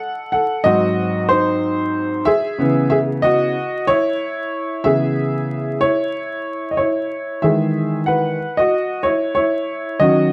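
Dark, warm production with vinyl crackle and light reverb frames this mellow, smoky hip hop fragment, cut from a longer piece, at 93 BPM in C# minor with a lazy swing. A lone upright piano sits up front, its tone woody, slightly detuned and vintage, moving from G#7b9 to C#m9 voicings. At 7.4 seconds it shifts into a new section on an Emaj9 chord and plays on until 10.3 seconds.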